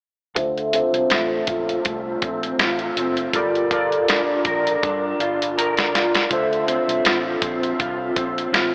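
This indie and bedroom pop fragment, cut from a longer piece, drifts along in a hazy, mellow mood over a lightly swung 4/4 groove. A lo-fi sampler-style drum kit sits up front with a thumpy kick, a medium-tuned snare and hi-hat, its compressed, pitched-down sound muffled and tape-warm. An electric guitar through a small old amp shares the foreground, picked and slightly broken-up, with ensemble chorus, a warbly pitch drift and a low-pass filter dulling its edges. Warbling synth keys blend triangle and sawtooth tones into a detuned, nostalgic layer with chorus and phaser, and a filter sweep runs through them until 6.3 seconds. Beneath it all, a dark, round, foam-muted fingered bass sits low in the mix while the chords move from Dm7 to Gm7 and back. A drum fill from 5.6 seconds leads into a new section at 6.3 seconds, and the whole track carries a plate reverb and an AM-radio character.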